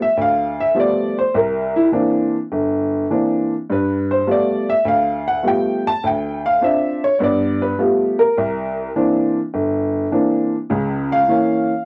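A woody, slightly detuned upright piano carries this short jazz passage alone from start to finish, sitting up front in the mix with a smooth, vintage character and the soft grain of cassette tape. The mood is sophisticated and warm, moving at a relaxed 103 BPM in 4/4 with a swung eighth-note feel. The piano spans a generous range from G1 up to A5, drawing on rich extended harmony that moves through G9, C9 and Dm7 before closing on a C#m6 at 10.7 seconds. A small, wet booth ambience and the homespun cassette sound give the performance an intimate, close-by presence. Tuned slightly under standard pitch at A4 = 439 Hz, the roughly 12-second fragment feels lifted from a longer piece.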